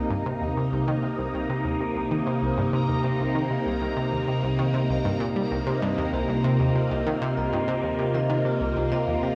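Ambient, sequencer-driven space music with a mysterious, cosmic mood, moving in a straight 4/4 over a single Cm7 chord in this short cut from a longer piece. A swirling, vintage phased string machine sits up front with sustained chords, its slow attack and long release colored by ensemble chorus, phaser and shimmer reverb. Beneath it, a round, detuned analog pluck plays a low riff with a fast attack and decaying tail, bright and forward, treated with chorus, delay and shimmer reverb. A metallic, ringing vibraphone struck with medium mallets spins arpeggios with fast motor vibrato, passing through a low-pass filter that sweeps across the whole 9.3 seconds, along with delay and shimmer reverb. High above, a faint bubbling stepped-filter texture holds a resonant, sustained tone with random filter steps, chorus and reverb. The whole mix sits in a wet concert-hall space and carries the warble and pitch drift of worn old cassette tape.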